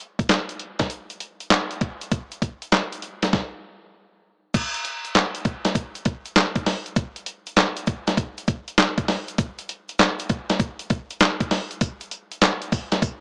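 This R&B excerpt moves at 99 BPM in 4/4, with a 16th-note swing of 66% that gives its punchy, slick groove a loose lean. A crisp 8-bit digital drum machine sits up front, its sampler-style kit running through kick, snare, hi-hat, handclaps, tambourine and crash cymbal from 0.2 s. The kick is thumpy and the snare medium-tuned, and a cassette tape effect gives the drums a tape-warm color, as if re-recorded in a small room. Beneath them, a very quiet egg shaker adds a grainy, bright acoustic texture from a live room. The pattern halts at 3.3 s and resumes at 4.5 s, opening a second section that carries on to the end. Moderate spring reverb and a small-speaker, home-cassette character lend the whole recording a lo-fi, homemade feel.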